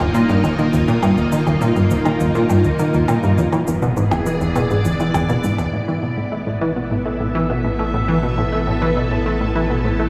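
Ambient, sequencer-driven space music with a mysterious, hypnotic pull, heard in a short section cut from a longer piece. A punchy, funky analog bass riff sits up front, its wave-folded, ring-modulated tone plucked with a fast attack and decaying through lush chorus and tape echo. Alongside it, a string machine ensemble, also up front, holds lush, vintage chords with a slow attack and a mellow sub-octave body, while a deep, round sub bass sustains underneath. Electronic cabasa and percussion blips, treated with tape echo, run through the first section and stop at 5.7 seconds as the music shifts from Ebsus2 through E7 to a settled Asus2. A cathedral reverb with a long tail places the whole ensemble in a vast, echoing space.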